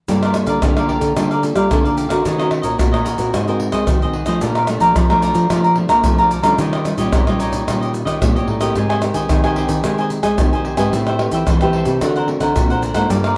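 Sunny and lively, this fragment of a samba-choro piece sets a crisp, picked cavaquinho against a fingerpicked nylon-string guitar with fresh strings, while a second, darker nylon-string guitar carries the bass line with thumb-plucked notes and audible finger squeak. Tube shaker, pandeiro, tamborim and a deep surdo sit up front in the mix, and a small room adds moderate reverb throughout. The harmony moves through rich extended chords, opening on Gm9 and arriving at D7alt at 12.0 seconds.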